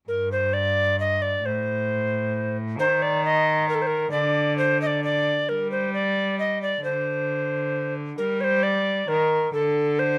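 A triple metre with a straight feel drives this short, rustic and courtly Renaissance-style consort dance, cut from a longer piece. An airy, close-miked alto recorder carries the melody with a crisp, chiffy attack and vibrato. Beneath it a bowed cello plays the bass line with a nasal, gut-string period tone, both parts running from 0.1 to 10.2 seconds in a light reverb.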